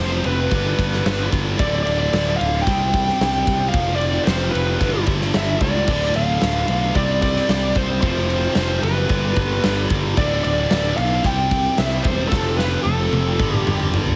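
Aggressive and menacing, this hard rock passage sets a smooth overdriven lead guitar melody, touched with slapback echo and plate reverb, over two picked rhythm guitars, one heavy and high-gain, the other tight and distorted in the background, while a punchy fuzz bass sits up front, a very quiet, gritty tonewheel organ holds thick sustained chords through a slow rotary speaker, and a big acoustic drum kit in a bright stone room enters at 0.2 s and closes with a fill from 12.3 s, all squeezed into a heavily compressed, radio-style sound.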